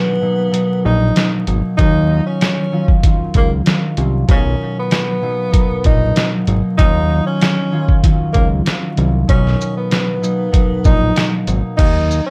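A swung, sampler-style boom-bap groove of compressed, pitched-down drums, whose thumpy kick holds back until 1.8 seconds, anchors this dark, tough hip-hop excerpt: a fat, saturated analog bass enters at 0.9 seconds beneath fingerpicked, ringing concert harp and a mellow, distant tenor saxophone melody with vibrato, plate reverb and delay, over a bed of vinyl crackle as the harmony moves between Bmaj7 and Ebm9.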